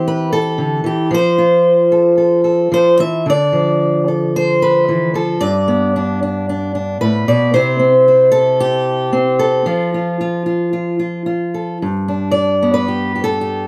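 A fingerpicked steel-string acoustic guitar with fresh strings and a full-bodied tone plays solo and up front through this gentle, pastoral folk excerpt in G mixolydian at 113 BPM in a straight 4/4, moving from C/E through F, Dm, G, C and F before reaching G at 11.8 seconds, captured by close, detailed microphones with light reverb.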